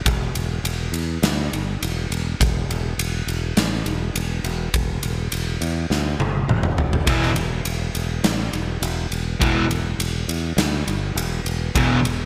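Aggressive and menacing, this hard rock excerpt in E minor pounds along at 103 BPM, opening with a huge arena drum kit, punchy kick, bright cymbals and gated reverb up front, alongside a growly fingered electric bass. After a drum fill from 5.9 to 7.1 seconds, two picked guitars enter in the background with a riff: one crunchy with subtle chorus, the other sludgy and overdriven. The sound is a bright 1980s-style digital production with light small-room ambience.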